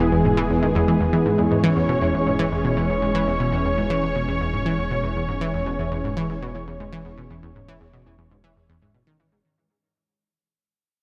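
Cosmic and mysterious, this ambient, sequencer-driven space music excerpt at 119 BPM in 4/4 rests on an E chord, with a lush, thick, warbling unison pad holding sustained chords up front, a round, bright, detuned analog pluck riff bathed in chorus and analog delay, and a deep sine sub bass on E1, all soaked in a dreamy 2.5-second hall reverb as the sound fades out from 1.4 seconds to the cut at 9.4 seconds.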